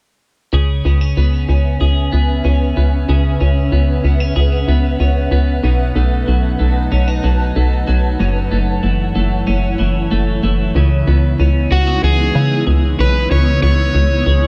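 A hollow, knocking FM bass sits up front in this haunting, ethereal dream pop excerpt, its punchy, bouncy notes striking fast and then decaying. Around it, a bright, twangy twelve-string electric guitar plays clean, picked arpeggios through lush chorus and tape echo, entering with the bass at 0.5 seconds. A granular cloud pad joins at 1.3 seconds with sustained chords, blurred and evolving, its detuned unison tone softened by built-in reverb and long release. The harmony moves from C#m7 through B7 and F#m7 before returning to C#m7 as a new section opens at 10.7 seconds. Shortly after, at 11.7 seconds, an overdriven slide guitar takes the melody with a fingered, warm tone carried on tape echo. The mix is echo-heavy, set in light reverb and digital ambience, and the passage is cut from a longer piece in a straight 4/4 feel.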